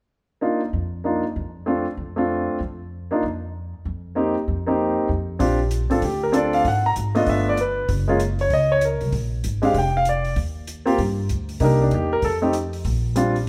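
A clear, intimate concert grand piano carries the melody from 0.4 seconds, its action noise audible, with a woody pizzicato upright bass joining at 0.7 seconds before a compact cocktail kit of hi-hat and dry, punchy kick enters at 5.4 seconds, giving this playful, sophisticated swinging jazz piano trio excerpt a moment on a G9 and a Cm9, all set in a large studio room heard from further back.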